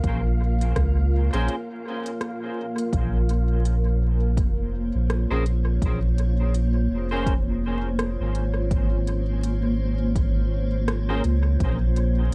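A blurred, granular pad of detuned chords and a round, up-front sub bass open this hazy ambient dub piece in Bb minor at 83 BPM, with a layered kick sitting in the background, crisp hi-hats and rim clicks fed into dub echo, and a breathy wind-like noise layer that drops out at 2.9 seconds. A bright, clean semi-hollow guitar enters at 1.3 seconds with chorused, echoing stabs, and after a break from 1.5 to 2.9 seconds the harmony shifts from Bbm to Bbm9. The swung groove sits inside a dry, home-recorded cassette sound with vinyl crackle, cut from a longer piece.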